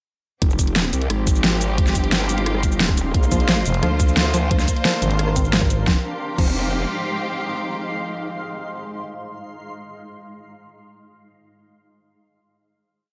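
A straight 4/4 drum and bass groove at 176 BPM drives this short, dark and aggressive technical piece in F dorian, with an overdriven, knocking electronic kick playing a broken-beat part under a tight dubstep kit of huge snare, rim, closed hat, shaker and crash. From 0.4 seconds a saturated, wobbling growl bass with chorus pushes up front through the drop over Fm7 and Bbadd9, joined at 3.7 seconds by a thick, chopped FM bass answering it. Behind them, a lush bowed string section with vibrato and portamento, a cloudy, evolving granular pad and a lo-fi, detuned pluck looping a 3-step sequence all pump against the beat before the strings and pad hold the final Fm7 chord, the pad ending at 9.2 seconds.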